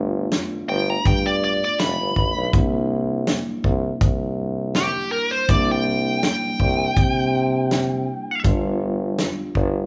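A light reverb and a dulled top end give this short cut from a longer piece the feel of a band playing live in one room. It is a swaggering, gritty soul blues at 81 BPM in 4/4, with a straight-eighth feel and a slight swing on the sixteenths, moving from G9 to C9 and settling on G7 at 8.4 seconds. A smooth, overdriven, picked lead guitar carries the melody up front from 0.7 seconds, soloing across the upper range. Beneath it, a clear, punchy tuba with a light vibrato and a vintage, pop-style tone plays the bass line prominently, while a dry, mid-forward acoustic soul kit of hi-hat, tight kick and medium-tuned snare drives the groove with its softened highs. A clean tine electric piano sits in the background, its sound coming through built-in speakers as it fills out the chords.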